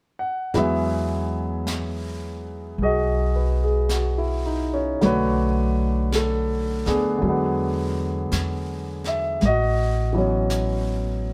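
Slow swung eighths in 4/4 give this intimate, late-night jazz ballad its unhurried sway. A warm baby grand piano sits up front and opens alone at 0.2 s, carrying the accompaniment through the middle register. At 0.5 s a pizzicato upright bass with woody, thumpy steel strings joins, along with a brushed drum kit whose airy, polished hi-hat and high-tuned snare sit softly beneath. The harmony moves from Emaj9 to Bm9 at 5.0 s, then through E7 to A6. The trio sounds like a band playing live together in one studio room with light reverb, and this short passage is cut from a longer piece.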